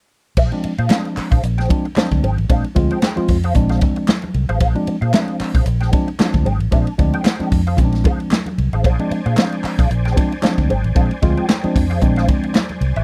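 A big-band drum kit sits up front in this energetic, strutting funk cut at 113 BPM, its crash, ride, hi-hat, medium-tuned snare and punchy kick swinging the sixteenths over a Bb9 chord after a brief stop that ends at 0.4 seconds. A dark, round, foam-muted fingered electric bass shares the front of the mix, while a worn, slightly out-of-tune tine electric piano punches in stabs through a phaser. Beneath them, a mellow, compressed electric guitar adds accompaniment colored by wah and ensemble chorus, and very quiet congas with a thick skin and a hollow, band-limited group handclap fill out the percussion. At 8.8 seconds a gritty, overdriven tonewheel organ arrives with sustained chords, turning slowly through a rotary speaker with chorus vibrato. The sound is dry and close, in the manner of a 1970s studio, and this excerpt is cut from a longer piece.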